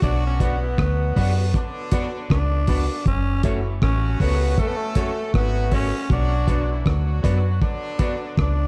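A raspy, growling tenor saxophone carries the melody with tape echo over a distant, octave-doubled horn section, a round, foam-muted dub bass sitting up front, a muffled, cloth-damped drum kit of kick, hi-hat and rim click, a dark, slightly broken-up guitar with subtle chorus, and woody upright piano stabs entering at 0.4 seconds, in this meditative, serious roots reggae excerpt at 79 BPM with a swung 16th feel, moving through Bm and F#m in an echo-heavy small-room mix.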